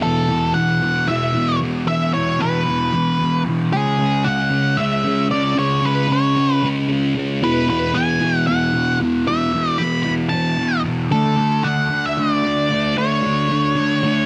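A double-tracked, warm fuzz guitar riff and a dark octave-fuzz lead guitar melody both sound from the opening second of this trippy, kaleidoscopic rock excerpt, played straight in 7/8 at 227 BPM counted in eighths and set in E mixolydian. The low, phaser-treated riff cycles through E5, C#5, E5 and D5 while the lead, distorted and trailed by analog delay, sits up front alongside it in a higher register. Light reverb and a digital ambience surround the two guitars until the clip ends at 14.3 seconds.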